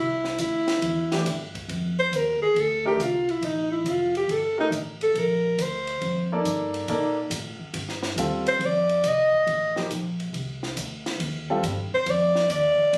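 A soft-attack, subtone alto saxophone sits up front over a woody, thumpy pizzicato upright bass and a compact cocktail kit with dark cymbals, a high-tuned snare and a punchy kick in this searching, spiritual modal jazz piece at 139 BPM, swung in 4/4 in F mixolydian; a clear, intimate upright piano with audible action noise joins at 1.1 seconds, and the saxophone takes a solo from 1.7 seconds over chords moving from Fadd9 to Gm and F9, captured in a compressed phone recording made in the room with moderate studio reverb.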